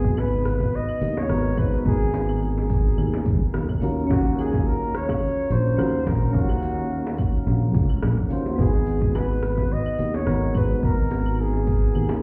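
A breathy, jazz-style flugelhorn solo with vibrato and scooped notes carries the wistful, smooth melody of this 107 BPM sunset chillout excerpt in G# minor, set over gently swung 16ths and a G#m9 to D#m9 and back to G#m9 progression, with round, mellow electric-piano-like synth keys shimmering in chorus, a bright, growly fretless electric bass sitting up front, a deep house kit of claves, metallic hi-hats, rim click and shaker plus a deep electronic kick (both overdriven, the kick stopping at 11.8 s), and tight, high-tuned bongos in the background, all heard as if muffled through a wall in a club's reverb.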